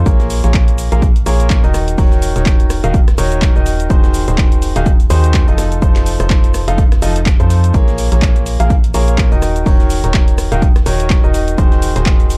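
A dark, warm mix with a digital ambience frames this bittersweet, energetic piano house passage in Bb minor at 125 BPM, cut from a longer piece and swinging its 16ths at 57% over a Bbm7, Ebm7, Ab7/Eb and F7 progression. An intimate, clear grand piano plays the riff with audible action noise, delay and sidechain pumping, while a hollow, organ-like FM bass with a fast attack and a decaying tone pumps beneath it. A punchy, tape-warm electronic kick leads the drums, joined by an analog drum machine re-recorded in a small room for handclaps, hi-hat, rim click and shaker, and a very quiet, gritty sampler-style breakbeat kit adding compressed hi-hat and snare.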